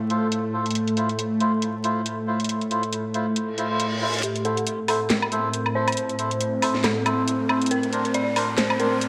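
A tense, detuned bowed-like drone opens this heavy, meditative deep dubstep excerpt with slow-attack chords, joined almost at once by reedy, breathy melodica stabs through dub echo and an up-front garage drum kit with a cracking snare, softened hats and woodblock in a swung half-time feel. A reverse cymbal and riser sit in the background from 3.5 seconds, and at 4.2 seconds an eerie, inharmonic synth bell takes the melody with chorus, tremolo and a filter sweep as the music builds. Wet plate reverb and vinyl crackle give the mix a dreamy, soaked haze.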